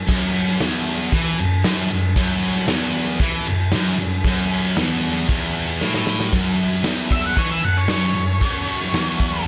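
A raw, lightly reverberant garage rock excerpt swaggers along at 115 BPM in straight 4/4 around Esus2, with a thick, double-tracked fuzz guitar riff up front in a low register, a punchy, gritty acoustic drum kit in a bright stone room driving crash, kick and medium-tuned snare, a drum fill from 5.8 to 6.3 seconds launching a solo, and a dark octave-fuzz lead guitar entering at 7.1 seconds with a picked high melody.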